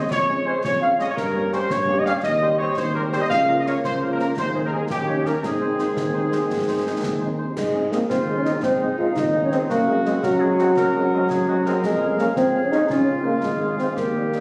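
A rousing, festive military-style march for wind band in 6/8 and Ab major at 112 BPM opens with a pure, soft-edged flute ensemble in the background over a mellow tuba bass, joined almost at once by an up-front trumpet section carrying the smooth-topped melody and close, dry concert snare, bass drum and dark clash cymbals. A tight woodwind section and a very quiet French horn section fill in behind, while a vintage-toned trombone section holds sustained chords in the background, and at 7.6 seconds a solo euphonium steps up front with light vibrato. Recorded on a phone in a wet concert hall, with added studio reverb and compression, this passage is cut from a longer piece.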